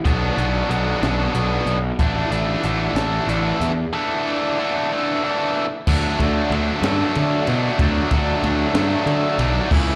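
Wistful and jangly, this indie rock excerpt moves at 62 BPM in a straight 6/8, counted in dotted quarters, and sits in D major, cut from a longer piece. A biting overdriven guitar carries the riff up front, its bright, double-tracked picking touched with slapback echo as it ranges from B2 to E4. Beneath it, a picked electric bass thick with fuzz and overdrive holds the low end from A1 to D3, sounding direct and amped. A compact cocktail drum kit, dark and smooth, adds a high-tuned snare and punchy kick alongside hi-hat, ride and crash cymbals. The harmony moves from Bm to Asus4 at 2.0 seconds, then opens onto D as a new section begins at 5.9 seconds. The whole has the feel of a live club gig heard through the venue's PA, wrapped in a small room's reverb.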